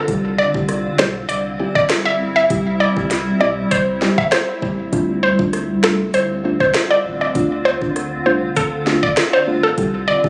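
A hollow, bouncy square-wave pluck carries the melody with chorus and delay over a cloudy, blurred granular pad with sidechain pumping, joined at 0.1 s by a soft, dark, rounded pluck with chorus and pumping, a deep sine sub bass and an up-front electronic afro-pop kit of knocking kick, sharp snare, rim click and crisp hats, in a sultry, hypnotic dancehall groove at 99 BPM in D minor that moves from C to Dm7 at 4.9 s and back to C, all set in a lush hall reverb and captured on a phone in the room.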